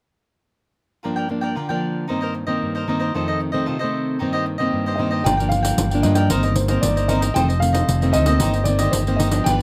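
Nostalgic and bittersweet, this short samba and choro excerpt opens with a bright, crisp picked cavaquinho and an up-front, full-bodied, fingerpicked nylon-string guitar with finger squeak over a repeating four-chord progression, before a grand piano carries an intimate melody with audible action noise from 5.0 seconds, and a dark, round, overdriven fingered electric bass and a jingly, dry pandeiro played with hard hands join at 5.3 seconds in a small room.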